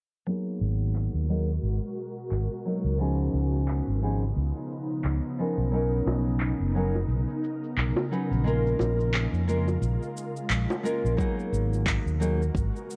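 A dark, round fretless electric bass sits up front in this smooth sunset chillout excerpt, its tone thickened by tube saturation and moved by a filter sweep. The piece moves at 88 BPM in 4/4 with a swung sixteenth-note feel in G# dorian, cycling through G#m9, C#9, Bmaj9 and A#m7 before returning to G#m9. A fingerpicked nylon-string guitar, deep and classical in tone and also up front, carries the accompaniment through a low-pass filter, tape echo and its own filter sweep. An ethereal, airy pad built from detuned sawtooth and triangle voices holds slow-attack chords with ensemble chorus and reverb, while layered electronic shaker and handclaps keep time. Low-tuned, vintage-sounding bongos played with soft hands join at 6.1 seconds, and a deep electronic kick drum arrives at 11.2 seconds as a new section begins. The whole mix has a worn, warbling cassette character with pitch drift, a low-pass filter, light reverb and digital ambience.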